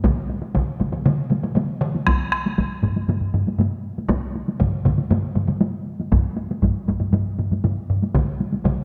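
A straight 4/4 pulse drives this ceremonial Japanese traditional taiko excerpt. Three up-front taiko ensemble layers play throughout its 8.8 seconds: two are struck with heavy sticks, one of them close and dry, and the third with hard sticks in a small room. A close, up-front solo taiko on similar sticks joins from 2.1 to 8.0 seconds, all of it bathed in a wet scoring-stage reverb.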